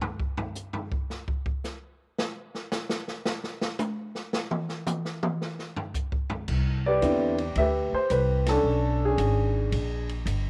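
This moody, smoky jazz piano trio excerpt opens with a drum solo on an open acoustic kit, its dark cymbals, medium-tuned snare and boomy kick sounding natural and up front in a small room, with a cassette-tape tint on the drums. The swung groove draws on crash, ride, hi-hat and toms before the upright bass enters at 6.5 seconds, plucked pizzicato with a woody, thumpy tone from its steel strings. A baby grand piano joins at 6.9 seconds to carry the melody, its tone warm and natural, also carrying a cassette-tape character. The harmony moves from Cmaj9 to Bmadd9 and then Bb, and the band hits an accent together at 8.4 seconds. Light studio reverb and the home cassette recording give the whole piece an intimate, lived-in feel.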